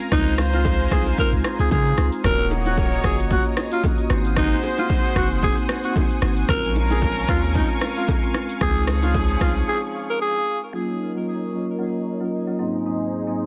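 Smooth and hypnotic, this afrobeats excerpt at 113 BPM with a light 16th-note swing sets a breathy, raspy alto saxophone melody and a clear horn section's second line over punchy deep house drums, a deep sine sub bass, woody marimba, very quiet bright congas and bongos, and a lush detuned sawtooth pad with chorus and phaser, the groove dropping out for a break at 9.7 seconds before the pad and marimba carry the Ebm7 and Ab7 changes on to 13.5 seconds in a dense, heavily limited modern mix.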